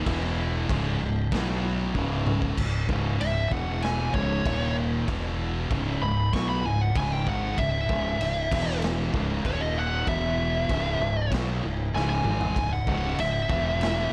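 A dark, compressed fuzz lead guitar sits up front with tape echo, soloing from 3.2 seconds over an ominous, heavy stoner and doom metal excerpt at 96 BPM in C# minor, where a bright, double-tracked distorted guitar riff and two thick fuzz guitars, one in the background and one very quiet, play riffs through power chords, a growling, overdriven fingered bass adds punch, and a raw garage drum kit in a bright stone room, with a punchy kick and rolled-off top, plays fills at 1.9 and 11.9 seconds.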